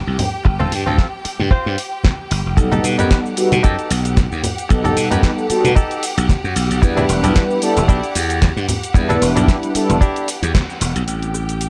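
Nu-disco at 113 BPM with a swung 16th feel, this short groovy, cosmic excerpt opens on lush, bowed symphonic strings holding sustained chords that pump against a dry, tight kick sitting up front, while a growly, glassy slap bass and a twangy clean electric guitar riff with subtle chorus and analog delay drive the groove. A house kit with a punchy snare, bright hats, rim click and shaker joins compressed, low-tuned congas in the background, and at 2.6 seconds a round, detuned synth brass enters with a filter sweep, chorus and delay as the harmony moves from G9sus4 through B7b13 and Em7 to Am7. A band accent lands at 10.5 seconds, all in a small, lightly reverberant room.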